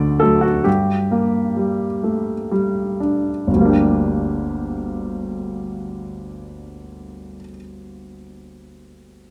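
This is a romantic classical character piece for solo piano, stormy and brooding in mood, and it is cut from a longer work. A grand piano carries everything alone from 0.0 to 9.3 seconds, reaching from the deep bass at G1 up to D5. The six-eight metre is pulled about with free rubato, and the opening passage slows down through its first 3.5 seconds before a second section takes over at 3.5 seconds. The instrument sounds clear and natural, placed up front, with the mechanical noise of its action audible beneath the notes. Close, detailed microphones lend an intimate feel, while a moderate recital hall reverb adds a measured sense of space around the dark, restless writing.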